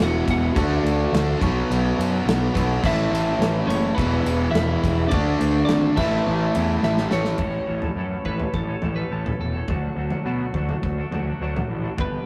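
Opening with a twelve-string electric guitar melody, twangy and clean, over an up-front crunchy overdriven guitar riff alongside a tight distorted guitar riff in the background, a growly fuzz bass and a loose indie drum kit with dark cymbals and a punchy kick in a pumping small room, this cathartic, restless quiet-loud alternative rock cut at 105 BPM in A major drops both riff guitars at 7.4 seconds after a drum fill, while a second compressed twelve-string electric guitar takes up arpeggios in spring reverb, all caught in a rough rehearsal-room recording.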